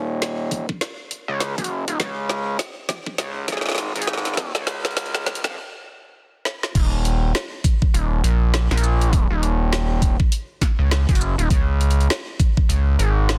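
Glitch hop at 101 BPM in Eb minor, this swaggering, gritty excerpt swings its sixteenths and moves from a build-up into a drop at 6.8 seconds. A gritty, aggressive synth bass opens at 0.0 seconds and runs throughout, its sawtooth and oscillator-sync tones layered with sine and triangle waves, wave-folded and resonant, with a fast-attack filter pluck, tube saturation and a sustained, up-front presence in the low register. An overdriven drum kit with a woody snare, bright hats, shaker and crash cymbal enters at 0.2 seconds and drives a fill through the build-up, while an overdriven, knocking electronic kick joins at 0.5 seconds, both sitting up front in a small room ambience. A stop holds the music in suspense just before the drop, a final drum fill at 6.5 seconds leading into it. The sound is dense and heavily limited, with a modern, high-passed digital sheen.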